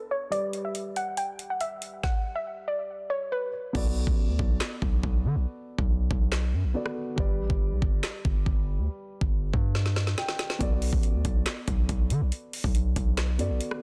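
A punchy, saturated 808-style bass hits hard and sits up front from 3.7 seconds, its heavy sine tone carrying a grainy noise layer and a fast, decaying attack in the low register. This excerpt from a longer piece is dark, melancholic trap-flavoured hip hop at 140 BPM in 4/4 with a half-time feel, set in B minor and moving between G and Bm7. It opens with a soft, round pluck melody, gentle and shaded by chorus, a low-pass filter sweep and delay, which plays only until 3.5 seconds. Underneath runs a dark, mellow concert grand piano accompaniment with deep bass and a somewhat boxy character, softened by a low-pass filter and sitting further back for the whole clip. The electronic trap kit brings a knocking kick, woody snare, rim clicks, handclaps, crash and metallic hi-hats, with the hats muted through much of the second section and a drum fill arriving at 9.7 seconds. The sound is dry and close, with a dense, heavily limited modern master.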